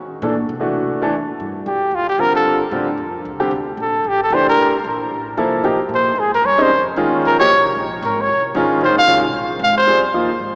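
Intense and hypnotic, this fragment of a longer modal jazz piece swings at 226 BPM in 4/4. A brief woody, pizzicato upright bass solo opens it, with a clear, naturally sustaining baby grand piano accompanying from the same moment. At 1.7 seconds a mellow yet punchy trumpet takes the lead with scooped notes and a smooth, forceful top, sitting up front over chords like Gm9 and Bbm9, all bathed in a wet cathedral reverb with a small-speaker sound.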